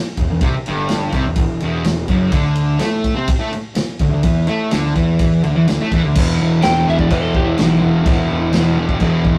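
A double-tracked fuzz guitar riff dominates this menacing, gritty garage rock excerpt at 126 BPM in E minor, driven by a growly overdriven picked bass and a vintage drum kit with a punchy kick and dark cymbals, while a compressed, slightly broken-up slide guitar with tape echo takes a brief solo from 6.6 to 8.5 seconds, all captured in a rough rehearsal-room sound with tube saturation.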